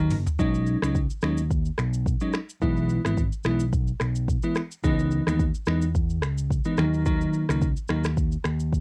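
An afrobeats groove at 108 BPM in 4/4 rolls with a light 16th-note swing, opening on a short drum fill before the main section settles in at 0.4 seconds. The mood is sunny and joyful, moving through B6, E, C#m7 and D#m in B major. An afro-pop drum kit with a produced, electronic edge supplies finger snaps, shaker, rim clicks, toms, metallic hats and a deep kick, all given a cassette-tape tint. A fingered electric bass sits up front with an amped, punchy tone, while a crystalline FM electric piano adds sparkling, fast-attack tones that decay, with a noise layer and a chorus shimmer. The piano drops out at 8.1 seconds as bass and drums carry on, and the whole cut from a longer piece has the light reverb and homespun character of a cassette home recording.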